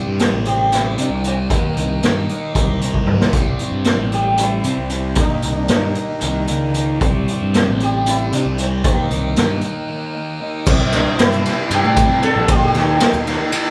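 A straight 7/8 groove drives this trippy, kaleidoscopic psychedelic rock passage cut from a longer piece, as a raw garage drum kit sits gritty and up front with a punchy kick, adds a fill at 2.9 seconds and drops into a break at 9.9 seconds. A thick, double-tracked fuzz guitar riff through phaser and an overdriven picked bass churn beneath a buzzing, shimmering sitar melody, while a mellow vintage combo organ holds sustained chords in the background over alternating Cadd9 and Eb harmony. Very quiet, grainy maracas join at 10.7 seconds, and the whole band sounds played live together in one large studio room with moderate reverb.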